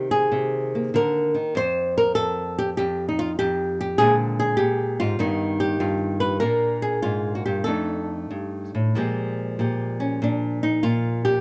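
Solo jazz in Bb mixolydian, this short excerpt from a longer piece moves at 97 BPM in 4/4 with a swung eighth-note feel and rubato phrasing, giving it a swinging, sophisticated mood. A single flamenco guitar carries everything, fingerpicked and dark in tone, sitting up front between F2 and C5. The harmony passes through Cm7, a chordless stretch, then Bb13, Gaug7, Bb6 and F13 before settling on Bb5. At 8.9 seconds the music shifts into a new section where the nylon-string guitar takes a solo until the close at 11.4 seconds. Close, detailed microphones capture the acoustic instrument intimately, with light reverb adding a touch of space.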